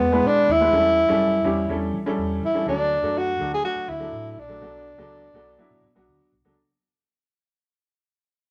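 Joyful and uplifting, this short cut from a longer uptempo soul piece carries a 1960s-style spirit in a straight 4/4 feel, fading out across its full 6.6 seconds. A breathy tenor saxophone leads the melody up front, its dark, whispered tone with soft attack and smooth top giving the jazz-style solo an intimate quality. Beneath it, a vintage muted fingered electric bass sits low in the mix, its foam-muted sound round, amped and punchy. A woody upright piano, slightly detuned and boxy, fills out the accompaniment close to the listener, entering at 0.1 seconds. The harmony moves from E through A7/E and D to Bm7, and a moderate large studio reverb gives the whole group a roomy sheen.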